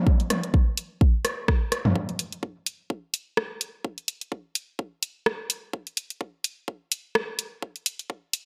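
Sparse and cool, this techno fragment runs at 127 BPM in 4/4 with a 56% swing on the 16ths, driven by a punchy, layered, high-pass-filtered electronic kick and a house kit of warm hi-hats and rim clicks, both placed up front. An organic electronic kit adds rim clicks and toms with digital delay and a large-room character, playing only from 0.3 to 1.9 seconds. Set in a digital ambience, the track moves into a build-up at 2.0 seconds that lasts until the cut.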